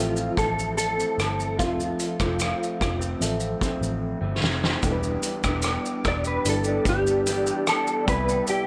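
Nostalgic and dreamy, this short bedroom-pop cut from a longer indie pop piece sets a dark, clean electric guitar melody with ensemble chorus and tape echo over a slightly broken-up guitar with warbly pitch drift, a reedy electric piano with fast tremolo and cassette tape colour sitting in the background, a round, foam-muted picked bass, and a distant, roomy drum kit with a fat snare and punchy kick, all in light reverb, where a drum fill at 4.0 seconds leads into a clean guitar solo from 4.8 seconds and a hollow, flute-like pad drifts in at 5.5 seconds.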